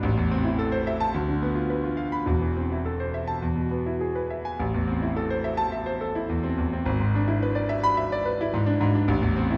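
Agitated and passionate, this short excerpt from a virtuoso classical piano study in A minor moves at 106 BPM in 4/4 with a rubato feel. A solo grand piano, clear, smooth and vintage in tone with short sustain, sits up front and spans from E1 to B5, moving through Am, Bdim/D, Am/E and E before settling on Am and turning to E7/G# at 6.9 seconds. The piano rings in a wet recital hall reverb, framed by a dark, warm production.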